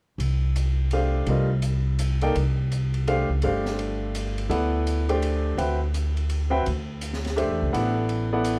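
This excerpt is a swung jazz waltz at 167 BPM in 3/4, with a lilting eighth-note swing and a cool, spiritual modal jazz mood. Upright bass and an open jazz drum kit start together at 0.2 seconds, the plucked bass woody and up front on steel strings, while the small-room kit stays low in the mix with dark cymbals across hi-hat and ride and a high-tuned snare. A clear, natural grand piano joins at 0.9 seconds as accompaniment, sitting up front in its middle and upper register. The harmony rests on Csus4 before moving to D9sus4 at 4.5 seconds, keeping the open, suspended color typical of modal playing. Light reverb and a dark, warm production give the short passage a cool, spiritual atmosphere.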